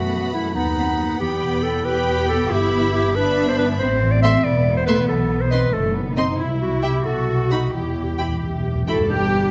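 Dramatic and urgent, this fast romantic orchestral passage in a rubato 6/8 is cut from a longer piece. Lush, vibrato-rich violins carry the melody over a second violin line, a clear, up-front clarinet, background violas, ringing thumb-plucked harp arpeggios, dark, woody cellos and smooth double basses. Timpani struck with hard mallets add a fill from 7.7 s; then at 9.1 s an oboe and airy flutes join on a second line while a very quiet, distant French horn section holds sustained chords, the ensemble sitting in a moderate scoring-stage reverb.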